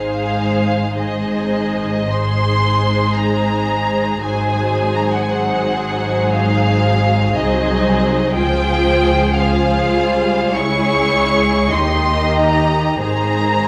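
Flowing with rubato in 4/4, this warm, lyrical slow movement for string orchestra, taken from a longer piece, features an up-front violin section carrying the melody with rich vibrato above a second violin line with a focused, smooth top, while lush violas supply the accompaniment, and a dark, woody double bass section shares the bass with a close, even cello section sitting in the background, the ensemble wrapped in a recital-hall reverb.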